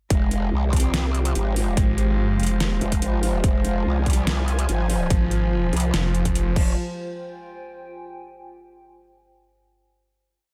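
Aggressive and chaotic, this short heavy wobble dubstep piece in F minor runs at 144 BPM in a half-time feel, opening straight into a drop where an up-front growling, wobbling bass with changing wobble speed and a punchy overdriven electronic kick play alongside a dubstep kit of deep snare, metallic hats and crash, while a soft, floating bowed cello repeats a riff melody through 12-bit sampler grit and digital delay over a lush, thick detuned pad with sidechain pumping, a snarling sawtooth bass with chopped phrases enters at 1.8 s answering the other bass, and a nostalgic, lo-fi, warbling tape-like pad with reverb carries the final chord through to 8.4 s.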